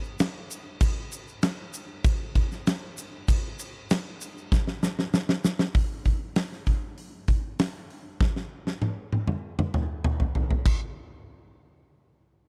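A grainy egg shaker sits quietly in the background as this swaggering, brooding rock cut opens, joined almost at once by a huge acoustic drum kit up front with a hall sound, bright cymbals, a fat snare, a punchy kick and toms. The shaker drops out at 5.7 seconds, just after a drum fill, and the kit carries on alone through a second, longer fill from 8.2 seconds. The whole excerpt has the close, dry feel of a 1970s studio recording.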